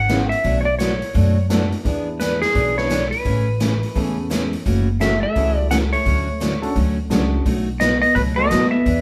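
A swinging 4/4 groove at 171 BPM drives this playful western swing excerpt, with a natural, big-room drum kit of hi-hat, medium-tuned snare and boomy kick, and a thumpy, woody pizzicato upright bass. Up front, a dark, clean lap steel guitar carries the melody with slide and volume swells over a bright, full-bodied picked acoustic guitar and a polished, present upright piano, moving through jazzy seventh and ninth chords. At 5.0 s a hollow-body jazz guitar joins with a second line, and the band sounds live together in a moderate stone room.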